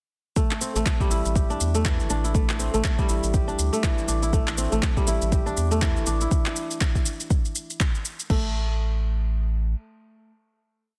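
A dense, heavily limited modern master with a digital ambience frames this short, earthy afro house piece at 121 BPM in A minor, swung on the sixteenths and resting on a single Am7. An up-front, fingerpicked kora rings out a crisp sixteen-step arpeggio sequence treated with tape echo and sidechain pumping. Beneath it sit a deep, tape-warm four-on-the-floor electronic kick, a programmed kit of shaker, handclaps and crash in a small room, and a round, dark, syncopated analog bass riff with sidechain pumping; the drums stop at 8.4 seconds, the bass at 9.7, and the kora's final note rings until 10.3 seconds.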